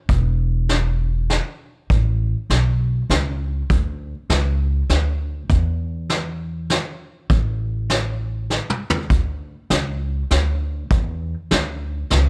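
This dry, closely miked recording sounds intimate and detailed, a short cut from a longer honky-tonk and classic country piece in A major with a nostalgic, easygoing mood. At 100 BPM in a swung 3/4, a woody, thumpy pizzicato upright bass on gut strings sits up front in its low register beside a vintage brush drum kit with a fat snare, punchy kick, hi-hat and toms, its top end rolled off and its sound mid-forward. The two play together throughout, and a drum fill stands out at 8.5 seconds.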